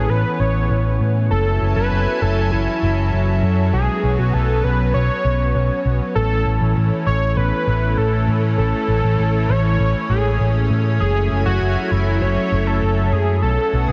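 A thick, detuned sawtooth lead with a sub octave and tape echo carries the melody from the first moment, over a lush, warbling pad of slow-attack chords with chorus and a round, dark picked electric bass that sits loudest in the blend. This nostalgic, uplifting synthwave passage at 99 BPM in a straight 4/4 moves through A, F#m7, Bsus2 and Amaj7 before returning to F#m7 at 11.0 seconds. Light digital ambience surrounds a dense, heavily limited modern master in this 13.9-second cut from a longer piece.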